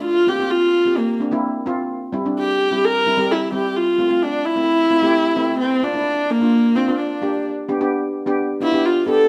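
A moderate stone-room reverb gives this short calypso excerpt a live, shared-space feel, as if the band were playing together in one room. The mood is festive and sunny, set in a straight 4/4. A dark viola carries the melody and takes the solo throughout, a single bowed player sul tasto with vibrato, soft attacks and an airy, intimate tone that sits close and up front. Beneath it, a double seconds steel pan played with soft rubber sticks supplies the accompaniment, its metallic shimmer mellow and soft, mid-forward yet quieter than the viola. The harmony moves from Bbsus2 through C7 and Fmaj7 to Bb, landing on G at 7.5 seconds, and the passage is cut from a longer piece.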